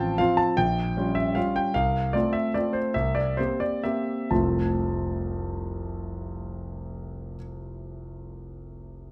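The recording is close and detailed, with light reverb around an intimate concert grand that sits up front and lets its action noise come through. This brief fragment of a classical piano waltz for solo piano, lasting about 9 seconds, has a sparkling, playful mood and a flexible, rubato feel in triple time. The piano ranges from a deep bass up into its upper register, and its natural tone gives the phrases a warm, personal character. The music slows between 1.2 and 4.3 seconds, easing into a dominant seventh chord before resolving to the home chord at 4.3 seconds. A contrasting second phrase follows and carries the playful mood forward until the fragment breaks off.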